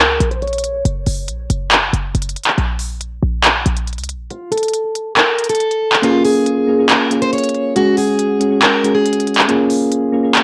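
A picked, plugged-in steel-string acoustic guitar, dulled by a low-pass filter and cassette tape and carrying audible finger squeak, plays a dark, menacing melody over a half-time trap groove at 139 BPM in Bb minor. Crisp electronic hi-hats and handclaps run throughout, while a punchy, tight 808-style bass with a fast attack holds the low end until 4.3 seconds, through a break where the guitar drops out and a filter sweep unfolds. From 6.0 seconds, soft, round electric-piano-like synth keys with chorus add mellow Bbm7 and Gbsus2 chords, and the piece, cut from a longer work, sits in moderate reverb with a home cassette character.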